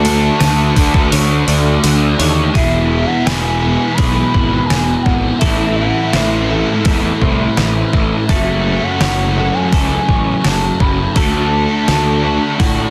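Blissful and wistful, this short cut from a longer shoegaze and dream pop track moves at a straight 84 BPM in 4/4, centred on E mixolydian. A hollow, woody synth lead with a soft attack and vibrato carries the melody through chorus and digital delay, while a bright, twangy twelve-string electric guitar sits in the background with lush chorus and delay on its arpeggios. Underneath, a thick fuzz guitar with ensemble chorus and a biting overdriven guitar washed in reverse reverb drive the riffs, joined by a growly, up-front fuzz bass. A detuned 8-bit drum machine with a thumpy kick and fat snare, overdriven and re-recorded in a small room, sits up front, and a very quiet, jingly tambourine appears only until 2.3 seconds. The kick and snare drop out from 1.1 to 2.6 seconds, and the chords move from D to E, Am, F#madd9 and back to D, all in a dry, dense and heavily limited modern master.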